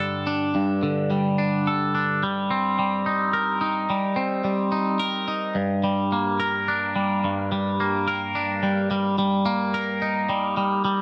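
Rock in G minor at 108 BPM in a straight 3/4, melancholic and cathartic in mood, heard as a short cut from a longer piece. A twangy, bright, clean electric guitar plays solo and up front throughout, picked and compressed, ranging from G2 to Bb4 and colored by phaser and digital delay within light reverb. The first 5.6 seconds build up over Gsus2 and Cm7/G before a new section moves onto Gm and then Eb/G.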